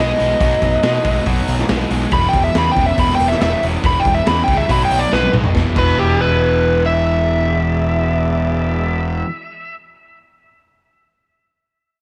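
This is a blues rock power trio cut with a southern rock edge, a driving, raunchy passage in 4/4 at 140 BPM in E mixolydian, taken from a longer piece. Up front, a bright slide guitar carries the melody, while a cranked, double-tracked stack guitar grinds out a picked riff in the low register. A fuzz-soaked picked bass sits prominently alongside it. Beneath them, a thick tonewheel organ holds very quiet sustained chords through a slow rotary speaker. A saturated garage drum kit enters at 0.2 seconds, with a punchy kick, dark cymbals and a pumping small-room sound, plays a fill at 5.1 seconds and drops out at 5.9 seconds. The harmony moves between B7 and E7 under light reverb, with a new section arriving as the fill resolves.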